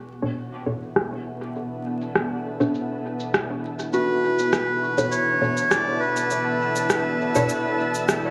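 A soft, organ-like pad opens this hazy ambient dub excerpt on a sustained Bm7, its detuned, ensemble-chorused tone sitting bright and up front while muted, deep chord stabs with phaser and dub echo and a tape-toned electronic cabasa and rim click join at 0.2 s, all three under a filter sweep. At 3.9 s a reedy, nasal melodica takes the melody up front with its own dub echo, as a very quiet felt-muted upright piano adds mellow, intimate arpeggios beneath. Vinyl crackle and a wet echo-chamber reverb lend the whole passage a spacious haze.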